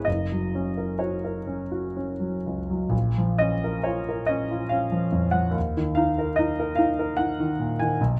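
Classical romantic nocturne for solo piano in triple metre with free rubato, serene and nostalgic in mood, and cut from a longer piece. A concert grand, tuned slightly below standard pitch, plays alone for the full 8.2 seconds, moving from F# through A#m to a D#5 chord. Its tone is clear and natural with a deep bass and short sustain, sitting up front under close, detailed microphones in a dry room.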